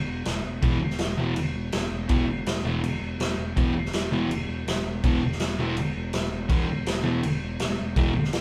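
A thick, double-tracked fuzz guitar sits up front on a distorted E5 riff from 0.6 seconds in this menacing, swaggering garage rock fragment, arriving over a growling, overdriven picked electric bass that opens at 0.0 seconds and a punchy vintage drum kit with a rolled-off top and medium-tuned snare that comes in at 0.3 seconds, the band captured playing live in one room with a moderate studio reverb.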